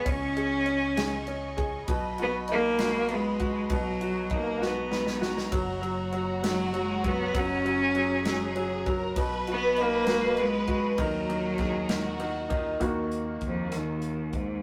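In a slow, straight six-eight at 66 BPM, this dramatic, aching Eb minor pop ballad excerpt sets a rich, bowed cello melody with vibrato up front over a bright, woody upright piano, a dark string section sustaining lush chords in the background, a round fretless electric bass and an airy country drum kit with a punchy kick that plays a fill from 4.6 to 5.5 seconds, while a smooth violin section adds a second line from 5.5 seconds until the piano takes a brief solo at 12.8 seconds, all in a rough rehearsal-room sound with tube saturation and a small room's reverb.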